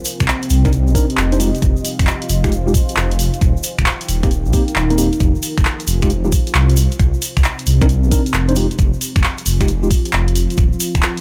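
This short cut from a longer UK garage track has a late-night, skippy feel, with a light reverb and a tape-warm character on the drums. At 134 BPM in 4/4, the two-step groove swings its sixteenths at 66% in F minor, built on a knocking, layered electronic kick and a punchy analog drum machine of finger snaps, handclaps and hi-hat, re-recorded in a small room. A grainy, bright egg shaker sits close but in the background. Up front, a dark detuned saw bass rumbles and beats between Eb1 and C2, its fast attack and sustained notes thickened by tube saturation. A deep, moody ambient pad with a slow attack and long release breathes under the sidechain pumping, its wave-folded, ring-modulated tone softened by chorus and built-in reverb. Mellow tine electric piano stabs, low-pass filtered and trailed by tape echo, enter at 0.6 seconds and stop at 9.9 seconds, tracing a progression that moves through Cm9, Fm7, Eb6 and Cm.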